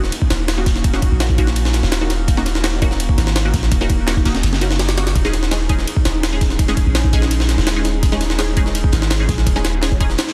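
A gritty, pitched-up jungle sampler kit with a thumpy kick, high-tuned snare and ride drives this frenetic, raw 167 BPM drum and bass excerpt in Eb minor, over a deep, sine-like 808-style bass, a very quiet crunchy breakbeat kit of saturated hi-hat and snare, resonant filtered dub chord stabs with phaser, chorus and dub echo, and a warbling, nostalgic lo-fi pad sitting in the background, moving from Ebm7 to Dbsus2/Eb at 5.2 seconds in a dense, heavily limited mix with little reverb.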